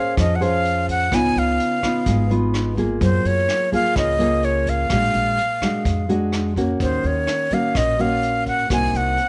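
A straight 4/4 bossa nova groove at 127 BPM in Bb minor comes from a vintage brush kit playing tight kick, hi-hat and rim clicks in a small room, its top rolled off, while a woody pizzicato upright bass enters at 0.2 seconds. Up front, a dark, thumb-plucked classical nylon-string guitar moves through chords from Bbm9 and Gbmaj9 to Bb7b13 and Ebm7. Over it, a breathy, close-miked concert flute carries the wistful, melancholic melody with a soft attack and straight tone, all set in light reverb.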